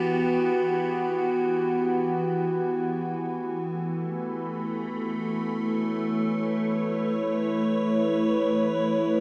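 In free time, this spacious, serene ambient fragment, cut from a longer piece, features a single evolving wavetable pad playing alone from 0.0 to 9.2 seconds, spanning E3 to C#5. Its detuned, morphing triangle tone is bright and up front, with a slow attack, sustained body and long release, and it is coloured by chorus, built-in reverb and tape echo. The harmony shifts from Em to A/E at 2.8 seconds, all set in a wet cathedral reverb with a 6.1-second decay.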